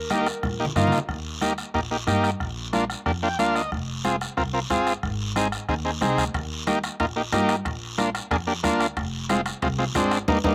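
Dry and close, this outdoor recording has almost none of the reverb or room sound that would soften its edges. It is a festive, sunny cumbia cut from a longer piece, opening with a mellow, vintage clarinet that plays briefly in a jazz style with subtone, light vibrato and scooped notes, touched by slapback echo, before it stops at 0.7 seconds as a drum fill rounds off the opening. The up-front combo organ carries the accompaniment with a buzzy, heavily vibratoed tone and a short fill at 3.1 seconds, while a woody pizzicato upright bass on steel strings holds down the low end. Underneath, a soft-beater bombo, ringing medium-tuned congas kept in the background, and a raspy, saturated guiro drive the groove. Metal-shell timbales with their own slapback echo join at 6.3 seconds, and the band lands a final accent near the close.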